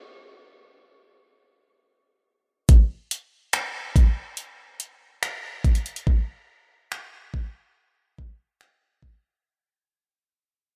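Late-night and sensual, this short cut from a longer R&B piece moves at a slow 71 BPM in a straight 4/4. It opens with a break, and the drum kit enters at 2.7 seconds. The electronic, produced kit uses finger snaps, metallic hi-hat and a knocking kick drum. Re-recorded in a small room, it sits up front in the mix with little reverb around it. From its entrance the drums carry the passage through a fade-out, stopping at 9.2 seconds.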